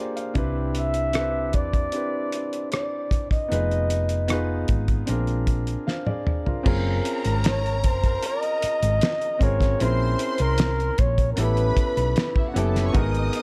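A dark, lightly reverberant production frames this silky, cinematic fragment of lush 1970s-style soul at 76 BPM in 4/4, where a clear concert grand piano with long sustain and a cloth-damped, thuddy drum kit with a fat snare and dark cymbals open the piece, a round hollow-body fingered electric bass sits up front, a breathy, whispered flugelhorn carries the melody with scooped notes from 0.8 seconds, a drum fill arrives at 5.9 seconds, and a distant bowed string section with vibrato and portamento joins as a second line at 6.7 seconds over chords moving from Cmaj9 to A9.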